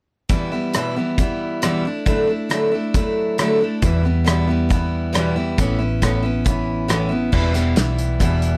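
A full-bodied, picked steel-string acoustic guitar opens this dusty, wistful folk rock and heartland rock excerpt up front, alongside a loose indie drum kit whose punchy kick, medium-tuned snare, rim clicks, hi-hat and dark crash cymbal sit in a pumping studio room with a rolled-off top. At 3.8 s a round, amped hollow-body short-scale electric bass joins the straight 4/4 groove as the chords move from Em through Dadd9 and Aadd9 before settling back on Em. The recording is dry, with little reverb.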